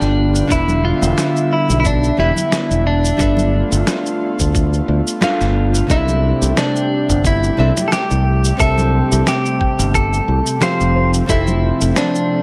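A growly, up-front fingered electric bass anchors this relaxed, blissful sunset chillout at 89 BPM with a lightly swung 16th-note feel, as a clean, picked electric guitar carries the melody and a fingerpicked nylon-string guitar accompanies, both steeped in dub echo, over a breathy chorused pad, gritty sampler-style electronic kick, snare and cabasa, very quiet hand-struck congas and bongos, and a gentle, dark pluck that adds round arpeggios from 5.9 s as the harmony settles onto Fmaj7, following a band accent at 5.2 s, with the mix set in a spring-reverb ambience.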